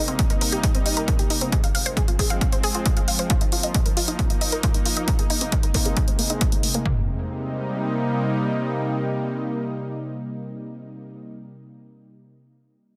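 Uplifting trance cut from a longer piece, soaring and bittersweet, where a lush, thick unison pad holds detuned sawtooth chords with chorus and sidechain pumping up front, a round analog pluck spins bright arpeggios through chorus and tape echo under a filter sweep until 7.1 seconds, an overdriven, dry electronic hi-hat and a punchy techno kit of kick and toms drive the groove, and the pad carries on alone until 11.2 seconds on a held C minor seventh chord in a dense, heavily limited master with light digital ambience.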